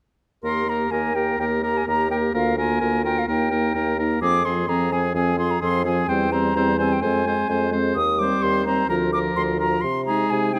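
Cheerful and graceful, this quick classical-period movement for wind quintet moves at 128 BPM in a straight 4/4 in Eb major, heard as a short cut from a longer piece. All five winds play together from 0.4 to 10.6 s, with the silver concert flute carrying the melody high above, its airy, metallic tone softened by vibrato and gentle attacks. The clear oboe adds a second line with its own vibrato, while the mellow French horn, with its smooth top, and the vintage-toned clarinet, set back in the background, fill in the accompaniment. Underneath, the mellow bassoon sits up front with light vibrato, anchoring the bass as the harmony moves from Eb through Fm and C7/E before settling toward Ab/C. Close, detailed microphones capture the ensemble within a moderate recital hall reverb of 1.6 seconds.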